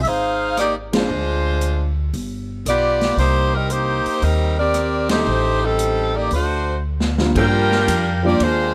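Big band swing jazz at 115 BPM with a dramatic, swinging mood, this short excerpt puts an up-front saxophone section with vibrato on the melody over a woody, thumpy pizzicato upright bass and a distant, roomy drum kit with a boomy kick, while an intimate baby grand piano with audible action noise adds brief accompaniment from 0.9 seconds and again from 5.1 seconds, band accents land at 0.8 and 5.0 seconds, a drum fill leads into a new section, and a vintage trumpet section enters with stabs at 7.3 seconds, all in light reverb.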